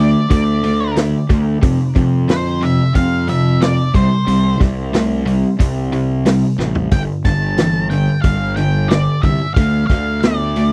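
A straight 4/4 groove drives this short, swaggering classic rock excerpt, with a vintage acoustic drum kit sitting up front from 0.3 seconds on, its punchy kick, medium-tuned snare, hi-hat and toms carrying a mid-forward, rolled-off top and a brief fill around 6.6 seconds. Locked low beneath it, a fingered electric bass comes through overdriven and fuzzed, growly and punchy, standing just as close as the drums. Two rhythm guitars share the riff: a bright, picked, overdriven electric set back in the mix, and a hollow-body semi-hollow guitar, also overdriven and picked, that sits very quietly underneath. Over the top, a dark octave-fuzz lead guitar plays the melody with distortion and tape echo. The harmony moves through power-chord roots of D5, F5, C5 and G5 before returning to D5, all captured in a dry, close 1970s-style studio sound with light reverb.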